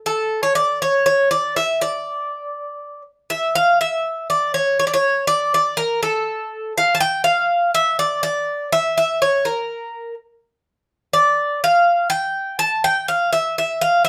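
Greek folk in a driving, dramatic 7/8 metre, with a straight feel that pushes steadily faster from start to finish in this short excerpt cut from a longer piece. A lone acoustic bouzouki carries everything, sitting up front with a metallic, picked tone from its doubled strings, some of them octave-doubled, staying in a high register. A moderate studio reverb adds a touch of room around it, and the opening phrase gives way to a new section at 3.5 seconds.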